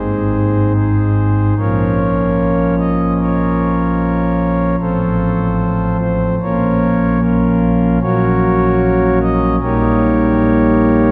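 A pipe organ on a principal stop carries this reverent, serene chorale-style classical piece alone from start to finish, its smooth, romantic voicing placed up front in the sound. The playing moves at about 74 BPM in 4/4, with a rubato feel that lets the phrases breathe, and it spans a range from Ab1 up to Eb5, tuned to A4 = 439 Hz. The harmony moves from Ab through Bbm, F/A, Gb/Bb and Eb7/Bb, settling on that last chord at 9.6 seconds. A cathedral reverb with a 4.8-second decay wraps the organ in the resonance of a church or concert hall. The 11.1-second passage is cut from a longer piece.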